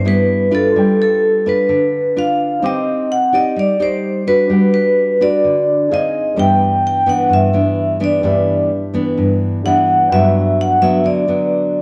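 Heard from further back in a wet echo chamber, this brief passage of breezy, romantic bossa nova carries a spacious glow. Up front, a vibraphone struck with medium hard mallets sings the melody with a metallic, ringing tone and a medium motor vibrato, while a full-bodied, deep classical nylon-string guitar is fingerpicked beside it. A polished grand piano with short sustain sits in the background, filling out chords that drift from Cmaj7 through Cmadd9 and Fm7 before settling on Gmaj7.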